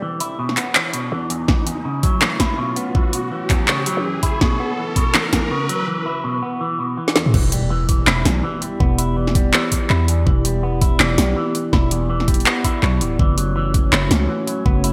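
Half-time drum and bass with a tense, dark mood, this excerpt opens on a detuned, moody analog pad with sidechain pumping, twangy clean arpeggios from an envelope-filtered electric guitar with digital delay, and a growling, buzzy 808-style bass, while a riser climbs toward a short break. The overdriven, layered drum kit with its woody snare, bright hats, claps, toms and crash sits up front with gated reverb, and a knocking electronic kick joins at 1.5 seconds. At 7.3 seconds an impact marks the drop, all set in a lush hall reverb with bright 1980s-style digital production.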